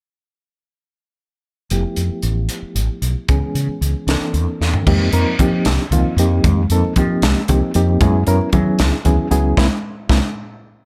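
A lilting 6/8 pulse drives this short, soaring piece of electric jazz fusion, cut from a longer performance and bright in mood. From 1.7 seconds, the crisp drum kit sits up front with a high-tuned snare, a tight kick, hi-hat, crash and toms, and its small room pumps audibly around it. A reedy electric piano, also up front and heard through its built-in speakers, carries the harmony with a fast, clean tremolo. Underneath, a fretless bass gives a dark, round, direct-and-amped low end. The harmony moves from lush, colorful extended chords into suspended ninth voicings, with a drum fill at 4.6 seconds leading into the second section, where high-tuned congas with a thin skin and hard hands join in the background at 4.9 seconds. The band closes on a shared accent from 9.6 seconds over a dominant seventh chord.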